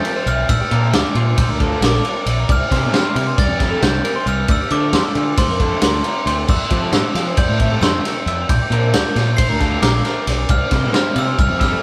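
A playful, wistful slice of math rock and midwest emo at 270 BPM in 9/8, where a sparkling, bell-like glockenspiel struck with brass mallets carries the melody over a twelve-string electric guitar's very quiet, twangy, clean, phaser-tinged arpeggios and a double-tracked, overdriven semi-hollow guitar riff sitting in the background. A loose indie drum kit sits up front with a punchy kick, dark cymbals and a gritty, saturated character, while a growling fingered bass with overdrive enters at 0.3 s; a second twelve-string, tucked in the background, sounds only until 0.5 s. The band plays live in one room with moderate reverb, moving through Bb, C7sus4, Dm7, Fmaj7 and Bb6 before returning to C7sus4, in a passage cut from a longer piece.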